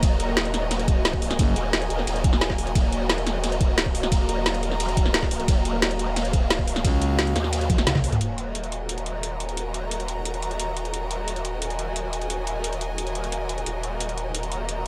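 Futuristic and dark, this excerpt of technical drum and bass in Eb minor runs at 176 BPM in a straight 4/4, opening on a drop that holds on an Eb minor chord. An overdriven, knocking electronic kick anchors the first 8.0 seconds alongside an up-front drum kit with a woody snare, metallic hats, ride cymbal and toms, and a drum fill from 7.7 to 8.2 seconds marks the turn into the next section. Underneath, a growling, wobbling bass shaped by a formant filter, chorus and overdrive pumps against the beat in the low register, while a thick FM growl bass cuts through in short bursts around 1.4 and 6.8 seconds. A deep, detuned sawtooth pad with a sub octave sits in the background holding sustained chords, and from 8.2 seconds a filter sweep moves across it. Above, an intense, bowed string section with vibrato adds a close, studio texture that also pumps with the sidechain. Light digital ambience frames the mix.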